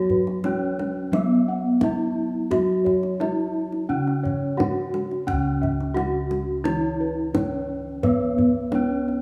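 A bronze metallophone carries the melody up front, its wooden-mallet strokes ringing with the shimmering beats of paired tuning in this serene, ceremonial Javanese gamelan excerpt at 87 BPM in a straight 4/4. Beneath it, a second metallophone struck with padded disc mallets plays a soft, close-miked accompaniment that sounds dry and full. Two sets of bossed gongs add mellow, round, beating bronze tones, one spinning arpeggios and the other anchoring the bass. A deep, acoustic kendang sits close in the mix and joins at 0.1 seconds. The ensemble is heard in a moderate concert hall reverb with a touch of small room ambience, giving the bronze a gentle bloom across the nine-second passage cut from a longer piece.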